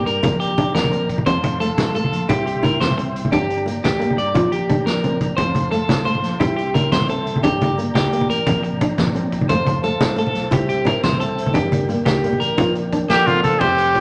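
Rolling in 12/8 at 117 BPM, this sunny, danceable highlife guitar band excerpt rides on ringing, low-tuned congas, a gritty vintage drum kit with dark cymbals and fills at 4.9 and 12.9 seconds, a round fingered electric bass and a fingerpicked flamenco guitar with finger squeak, while a twangy, slightly broken-up electric guitar picks arpeggios up front over soft, flute-like tonewheel organ chords on a fast rotary speaker, moving through a repeating Bb6, F, C, Gm progression in a lush large-studio reverb until a raspy, growling trumpet and a very quiet tenor saxophone enter at 13.1 seconds.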